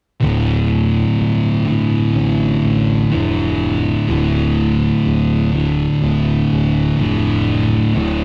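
Heavy and sludgy, this slow metal excerpt crawls along at 62 BPM in D minor, parked on a single Dm chord. Two thick, distorted fuzz guitars play the riff from 0.2 to 8.2 seconds: one dark and up front, the other mellower and set further back. A growling, overdriven fingered bass sits low underneath them. The rough rehearsal-room sound carries tube saturation and a moderate studio reverb.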